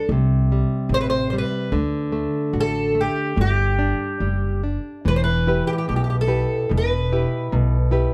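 Longing and mournful, this short cut from a fado-style ballad moves at 73 BPM in 2/4 with a loose, rubato feel, opening in G major. A fingerpicked twelve-string acoustic guitar carries the melody in a narrow upper range, its octave-doubled strings sounding shimmering through a plate reverb, with finger squeak audible up close. Beneath it, a nylon-string guitar supplies classical, fingerpicked accompaniment, while a pizzicato upright bass adds a woody, growly, thumpy low end from its steel strings. All three parts sit up front and play together through nearly the whole clip. At 5.1 s the harmony turns to E minor, deepening the sorrowful tone before the cut ends at 8.1 s. The production is dark and warm, with only light reverb around the ensemble.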